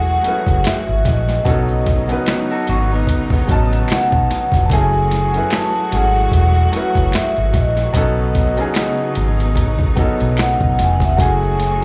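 A soft-mallet vibraphone sings a ringing, airy melody over woody upright piano, lush bowed strings with portamento and a dark, round, foam-muted electric bass, joined by a gritty, thumpy boom bap kit with hi-hat, snare and snaps plus a background egg shaker and handclaps in a swung neo-soul R&B groove moving between F#m9 and B9, while a slightly broken-up, lo-fi electric guitar adds a brief second line from 2.5 to 4.5 seconds, the whole soulful, late-night fragment heard as a live club gig through the venue's PA.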